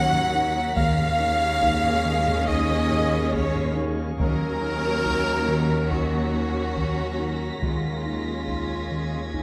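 A clear, focused violin section carries the melody from the opening moment of this mysterious, uneasy suspense cue, cut from a longer film score. A mellow clarinet and a second, very quiet violin section with expressive vibrato trace a second line alongside it. Beneath them, a viola section adds background accompaniment with portamento, while cello and double bass sections hold a low, smooth bass and a round, deep analog synth bass repeats a dark riff. High above, a distant, very soft violin texture sits over a glassy, drifting harmonics pad, which shimmers with chorus and its own reverb. Distant taiko drums struck with heavy sticks sound in the background throughout, and soft-mallet timpani enter briefly at 0.8 and again at 7.6 seconds. The harmony moves between a brooding minor seventh chord and a chord over a held bass note, and a moderate scoring-stage reverb gives the ensemble its sense of space.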